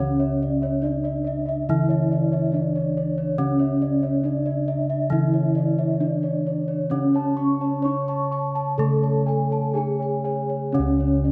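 Set in a moderate stage reverb, this shimmering, hypnotic gamelan fragment in C# pelog moves at a straight 60-71 BPM in 4/4, with a mellow, padded-mallet bronze metallophone melody whose paired tuning produces shimmering beats, a bright horn-mallet metallophone playing the lower accompaniment, a mellow, padded-mallet metallophone playing high arpeggios, round, beating bossed gongs in the bass, and dark, smooth bossed gongs adding arpeggios from 0.2 s.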